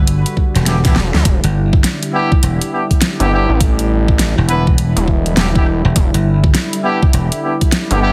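A swaggering, playful glitch hop excerpt with a swung 4/4 groove, sitting on a single Em7 chord and carrying a heavily compressed, radio-like sound with little reverb. Up front, a bright, punchy slap bass and a gritty, distorted sawtooth synth bass drive the low end beneath an overdriven, knocking electronic kick and a dubstep kit with hi-hat, rim click and a huge snare, and a drum fill arrives between 0.7 and 1.3 seconds. Above them, a distant, roomy horn section with light vibrato hits stabs through dub echo and sidechain pumping, while a smooth, nasal, detuned analog pad holds sustained chords with chorus.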